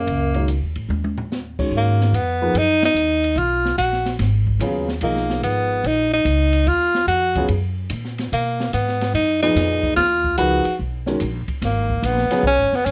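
A clear, up-front tenor saxophone with light vibrato carries the melody through this searching, hypnotic excerpt of swung modal jazz in G# dorian at 145 BPM, opening over a woody pizzicato upright bass and a brief, distant and roomy bass clarinet note with subtone that stops by 0.5 seconds. An open studio drum kit with a high-tuned snare and boomy kick soon joins, followed by an intimate grand piano with audible action noise and long sustain. The drums play a fill at 0.9 seconds before the harmony moves from Ab9sus4 to G#m9 at 1.7 seconds, all under light reverb.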